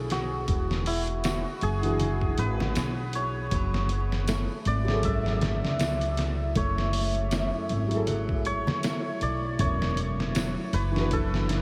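A shimmering, hammered santur melody with dub echo opens this melancholic, cinematic trip hop excerpt in F# minor at 79 BPM, over a felt-muted upright piano with tremolo and tape echo, a woody pizzicato upright bass up front, and a gritty, pitched-down sampler-style kit with a thumpy kick and a swung 16th-note feel. Ringing tambourine and congas sit in the background from 1.2 seconds, a fingerpicked flamenco guitar with finger squeak and tape echo enters at 3.5 seconds, and a deep, moody, detuned pad with chorus arrives at 4.8 seconds. The chords move from E9 to F#m9 and then E7sus2, all inside a dreamy mix soaked in huge ambient reverb and vinyl crackle.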